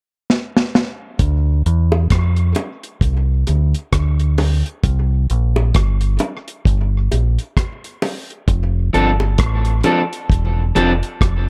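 A drum fill opens this dub reggae excerpt at 0.3 seconds, the kit sounding dry, smooth and up front, with a tight kick, a medium-tuned snare, rim clicks and hi-hat under a rolled-off top. At 1.2 seconds a deep fingered electric bass arrives, round and dark, played direct and amped in a low range as the harmony settles onto Dm7 before moving to C5 and then F6. Soon after, high-tuned bongos struck with hard hands add a tight, small-room texture, trailed by tape echo and sitting lower in the mix. Near the end, from 8.9 seconds, an electric guitar at the edge of break-up adds picked, slightly broken-up accompaniment, its sound also carrying tape echo. At a slow 66 BPM in 4/4 with a swung sixteenth-note feel, the piece feels hypnotic and heavy, framed by a dark, warm production.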